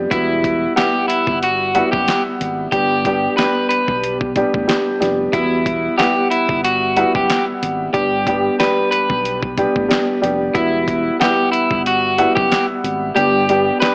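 Boom-bap hip-hop in E minor at 92 BPM with a dark, moody, swung feel, this excerpt alternates Emadd9 and G chords under an up-front, woody, slightly detuned upright piano with cassette-tape grit, a slightly broken-up picked electric guitar melody, a round, punchy fingered electric bass, and a gritty, compressed sampler-style kit of thumpy kick, fat snare, hi-hat and handclaps, all set in light reverb with an AM radio sound, until the kick drops out at 13.2 seconds.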